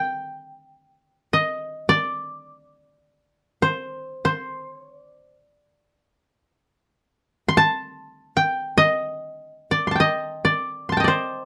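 A solo koto, played with fingerpicks, opens this calm, austere fragment of Japanese traditional chamber music, drifting in free time in D in the sen mode. Its woody, mellow tone sits up front and dry, moving between C5 and C6 for the full 11.4 seconds. Light reverb and a dark, warm production give the brief passage, cut from a longer piece, a hushed, contemplative air.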